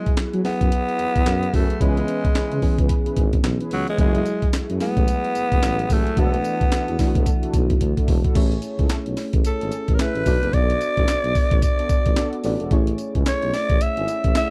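A raspy, up-front alto saxophone carries the melody with vibrato through this slick, confident new jack swing excerpt at 110 BPM, riding a gritty, compressed breakbeat kit with a thumpy kick, high-tuned snare, handclaps, tambourine and hi-hat swung on the 16ths, plus a drum fill at 7.8 seconds. A mellow tuba plays the bass line with jazz-style vibrato, while a soft, round FM electric piano with chorus fills in chords moving from F#9sus4 through C#m7 and F#m9, shifting to Amaj7 at 8.3 seconds and then Bm7. From 1.5 seconds, dark, detuned synth brass stabs with phaser and tape echo sit in the background of a dry, close 1970s-style studio sound.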